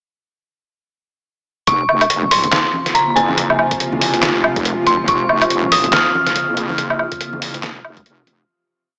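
Cavernous and heavy, this short deep dubstep piece in F phrygian moves at 141 BPM with a swung, half-time feel, its drop arriving at 1.7 seconds and fading out from 6.2 seconds. A dark, detuned FM synth bell carries the melody in eerie, inharmonic call phrases, its vintage, warbling tone treated with chorus and dub echo. Beneath it, a wobble bass rumbles low with a saturated, resonant square-wave growl, its modulated phrases shifting wobble speed. From 2.3 seconds a string-like, bowed drone holds tense sawtooth chords with slow attack and vibrato, soaked in its own reverb. The half-time beat pairs a layered, tape-warm electronic kick with an up-front, pitched-down trip hop sampler-style kit of muffled snare, handclaps, hi-hat and low woodblock, while ringing, low-tuned congas echo in the background from 2.2 seconds. The whole mix sits in light reverb with a small-speaker character.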